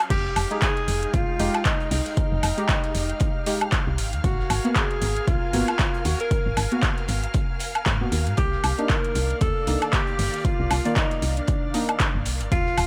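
A small room ambience frames this moody, late-night deep house passage, cut from a longer piece, with overdriven electronic drums pushed up front and a gentle swing on the sixteenths. A punchy kick and a layered kit of metallic hi-hats, handclaps, crash cymbal and woodblock carry the groove, while a very quiet acoustic soul kit adds a dark, rolled-off hi-hat and snare underneath. A round, woody FM bass and a deep, detuned chord stab, coloured by ring modulation, a moving notch, chorus and tape echo, both pump against the sidechain as the harmony moves from Fm9 to Abm9 at 4.0 seconds and Cm9 at 8.4 seconds. In the background, a silky, warbling string machine holds sustained chords through ensemble chorus, joined by a lush bowed violin section high above. The centrepiece is a breathy, whispered tenor saxophone solo in jazz style, intimate and subtoned with scooped notes and vibrato, trailing tape echo across the passage.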